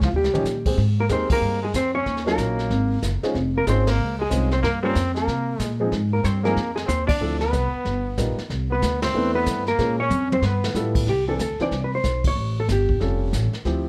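Small-group swing and bop jazz at a brisk 186 BPM in Ab major, with a swinging, sophisticated mood in this excerpt cut from a longer piece. A dark, clean hollow-body electric guitar carries the melody while a brilliant, punchy trombone with light vibrato and scooped notes plays a forceful second line until 11.0 seconds, over woody pizzicato upright bass sitting up front, a warm upright piano with short sustain, and a brushed drum kit with dark cymbals and a boomy kick. Extended jazz chords drive the changes, punctuated by band accents and drum fills, with light reverb and tape saturation coloring the sound.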